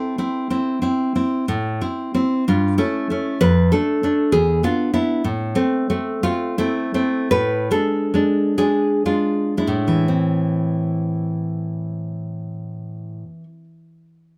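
A lone nylon-string guitar opens this brief, intimate fragment of a romantic classical piece, fingerpicked in 6/8 with a free, rubato feel. Its tone is bright yet full-bodied, sitting up front and close, with fine detail and only the faintest trace of room around it. The mood is wistful as the harmony moves from A minor through A7 over G and D minor over F, reaching a bare E5 chord. The playing slows noticeably between 4.3 and 10.1 seconds while an E7b9 chord darkens the line, before the music settles back onto A minor. The guitar falls silent at 13.6 seconds, leaving the passage suspended as part of a longer work.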